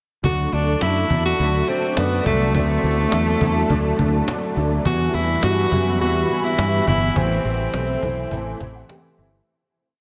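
Over a straight 104 BPM in 4/4, a woody cajon with a big backbeat sits in the background while a dark, round fretless electric bass plays a syncopated pop-funk line with slides up front, grounding this nostalgic, romantic 1980s-style pop piece in D mixolydian, where a clear tenor saxophone with light vibrato and a diffuse ambient delay states punchy, motif-based call phrases over a warm baby grand piano's open, close-voiced eighth-note chords with ensemble chorus and a swirling, detuned sawtooth pad with phaser and chorus, the mix soaked in a huge dreamy reverb before a fade-out from 7.2 s and a piano fill from 7.7 s.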